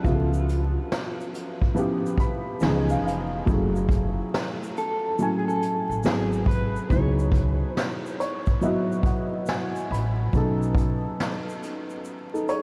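Soaked in a huge ambient reverb and dusted with vinyl crackle, this dreamy, mellow lo-fi hip hop fragment drifts at 70 BPM with a swung 16th feel, as an up-front, thick-felted upright piano carries soft, intimate chords and fills through altered dominant and minor-eleventh harmony, a woody pizzicato upright bass on gut strings holds the bottom until 11.0 s, a small-room brush kit with a punchy kick and high-tuned snare keeps time, and a dark, slightly broken-up fingered electric guitar carries the melody through tremolo and tape echo before falling away at 8.2 s.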